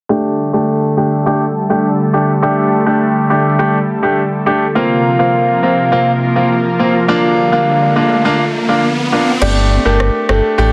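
Dancehall in G minor at 103 BPM, this short excerpt from a longer piece carries a sultry, tough mood over a straight 4/4 feel. A bright baby grand piano plays accompaniment from the start, its polished, short-sustained tone up front with audible action noise, while a lush unison pad holds thick, warbling sawtooth chords colored by chorus, moving from Gsus2 through Fsus4 to Bb under a filter sweep. An electronic riser builds from 6.6 seconds to 9.4 seconds, when the arrangement shifts back to Gsus2 and new parts arrive. There a woody marimba with medium mallets plays a buzzing, dry melody with delay, a deep, full sine sub bass with octave sits up front in the low register, and a produced electronic afro-pop drum kit adds crash cymbal and rim click while the kick stays muted. The mix is dense and heavily limited, with light reverb.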